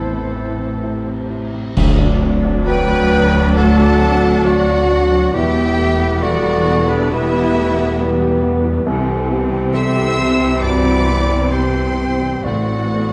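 A lush, vibrato-laden violin section carries the melody through this cinematic, emotional film-score excerpt, moving at a slow, rubato 67 BPM in D mixolydian with an uplifting, tender mood. Around it, an airy, close-miked concert flute, a clear solo clarinet and a second, focused violin section weave supporting lines, while a classical oboe sounds only briefly in the opening 1.3 seconds. Beneath them, a grand piano with short sustain, a bowed viola section and a tight, mellow French horn section fill out the harmony in the background. Smooth, even cello and double bass sections anchor the low end through a progression that moves from Am to D, Em and C before returning to Am. At 1.8 seconds the full ensemble lands an accent, with bright clash cymbals and concert bass drum, and round, soft-mallet timpani entering beside them and returning at 12.4 seconds. A moderate scoring-stage reverb gives the whole orchestra a dark, warm production.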